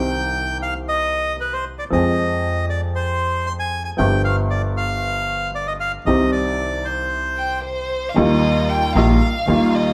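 A reedy, close-miked bandoneon carries the melody of this passionate, dramatic tango, sitting dry and up front over a rubato pulse in four. Beneath it, an intimate upright piano supplies the accompaniment with a woody, slightly detuned tone, short sustain and audible action noise. A pizzicato upright bass with steel strings gives a dark, thumpy low end. A warm, expressive bowed violin, full of vibrato and portamento, enters at 7.4 seconds to take up the second line, the bandoneon stops at 7.6 seconds, and the violin moves into a solo at 8.2 seconds. At that point a focused studio string section adds stabs from the background, and the chords move from Cm, Fm, G7 and back to Cm on to Ebadd9. The band plays live in one room, bathed in a large, wet reverb, in a passage cut from a longer piece.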